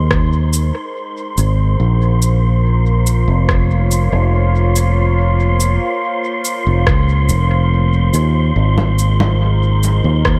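The recording sounds dry, with little reverb, in this short cut from a longer ambient dub piece at 71 BPM in Bb minor with a straight 4/4 feel. A smooth, warbling analog pad of detuned sawtooth and triangle tones fades in over the full 10.4 seconds, holding slow-attack chords through a lush chorus as the harmony moves from Ab to Bb minor at 1.8 seconds and back to Ab at 8.6. A punchy, up-front fingered electric bass anchors the low end. Above it all floats an airy, breathy, wind-like noise texture pitched high at C6, dark in tone and carrying its own reverb. A muffled, thumpy, pitched-down electronic kick and tape-colored electronic rim click, cabasa and congas enter at 0.1 seconds, the rim click, cabasa and congas trailing dub echo. The mood is meditative and deep.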